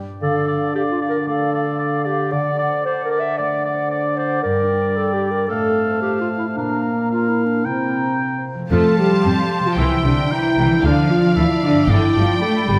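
This cinematic excerpt opens in D minor at 113 BPM with a mellow French horn section holding sustained chords over ringing, thumb-plucked concert harp arpeggios, joined at 0.2 s by a solo clarinet, an airy large flute ensemble and a smooth-topped oboe weaving second lines through a progression from Dm to D7, Gm and C7. At 8.7 s the music turns to F major and the strings arrive: a clear, intense symphonic violin section takes the melody, with soft-attack studio violins in the background, very quiet viola accompaniment, and a focused cello section alongside an expressive, portamento double bass section anchoring the bass. The soaring, triumphant mood sits in a moderate scoring stage reverb.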